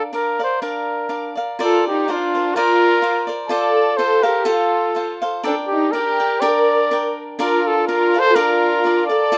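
Mexican folk mariachi in a proud, festive mood, this short cut from a longer piece sets a solo trumpet up front, smooth-topped with light vibrato in a classical style, over crisp picked cavaquinho accompaniment, while a dark, reedy violin section with a gut-string tone and period-style bowing enters as a distant second line at 1.6 seconds, all in a rough home demo mix with moderate studio reverb.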